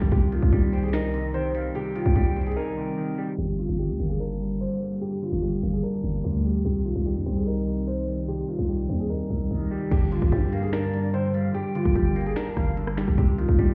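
A smooth, vintage baby grand piano melody opens alongside a clean semi-hollow electric guitar, a growling, buzzy 808-style bass and an up-front trap kit with a hard-clipped kick, sharp snare and crisp hats, setting a brooding, dark half-time hip hop groove at 147 BPM in G minor, as a very quiet, glassy FM pad and a breathy jazz flute with vibrato drift in, the drums dropping out at 2.6 s for a break and a long filter sweep before returning at 9.9 s, the whole mix sounding muffled as if heard through a wall, wrapped in stone room reverb.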